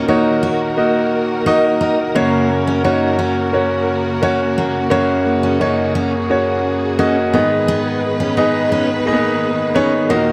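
A steady, straight 4/4 pulse at 87 BPM carries this hopeful, anthemic piano-driven pop piece in F# major, cut from a longer work and moving from D#m to F# at 2.2 seconds and on to G#m at 7.3 seconds. An up-front, intimate grand piano leads the accompaniment with its action noise audible, while a full-bodied jumbo steel-string acoustic guitar picks a riff alongside it. A lush, bowed string section holds sustained chords with vibrato and a smooth top, all set in a moderate large studio reverb.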